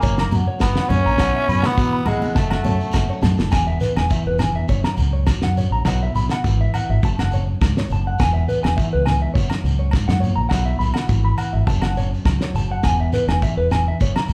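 Highlife guitar band at 103 BPM in E major, joyful and carefree, where a raspy, gritty tenor saxophone with vibrato sings up front until 3.2 seconds over a dark, slightly broken-up guitar in the background, picked clean guitar arpeggios, a round, punchy fingered bass, a dry 70s drum kit with a fat snare and a fill at 2.4 seconds, grainy shekere, ringing agogo bells and bright, high-tuned congas until 3.4 seconds, all played live in one large studio room.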